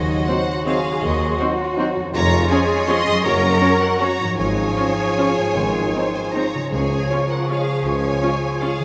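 A lush, rich symphonic violin section carries the melody with vibrato through this festive, elegant classical fragment in a lilting three, its uneven beats and rubato giving it a graceful sway, while a ringing, thumb-plucked concert harp spins arpeggios beneath. Clarinet, a mellow flute ensemble, a softer studio violin section, a very quiet viola section and bassoon fill in the inner lines, with French horns holding sustained chords, a dark trumpet section adding very quiet stabs, and cellos, double basses and a distant tuba anchoring the bass. Soft-mallet timpani enter briefly at 5.6 seconds, and a vast cathedral reverb bathes the ensemble in a long, echoing glow.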